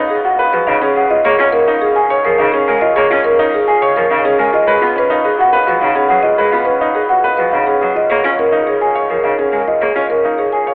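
Classical minimalist pattern music in 3/4 at 105 BPM, this brief passage cut from a longer piece feels propulsive and hypnotic with a straight pulse. A marimba played with soft mallets carries the melody up front, its padauk bars sounding woody, mellow and round, as if in a boxy small room. Beside it, a concert grand piano spins arpeggios from the first moment, intimate and natural, with audible action noise and deep bass. A single bowed cello enters at 0.5 s, rich and expressive with vibrato and portamento, sitting distant behind the other two until it stops at 10.1 s. The harmony moves between B69 and A#m7, and the whole ensemble sits in a vast, echoing cathedral reverb filtered through a telephone sound.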